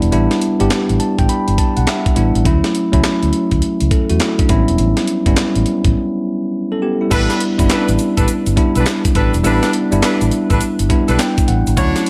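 Bouncy and upbeat, this swung new jack swing R&B excerpt rides on a gritty, compressed breakbeat sampler-style kit with a thumpy kick, handclaps and crash, a round, foam-muted electric bass and a bell-like tine electric piano that adds fills at 0.7 seconds and again near the end, before a break at 5.9 seconds gives way to soft-attack jazz horn stabs with light vibrato and a grainy shaker in the background from 7.1 seconds, all over chords moving from A9sus4 through Dmaj9 to A9 in light digital ambience.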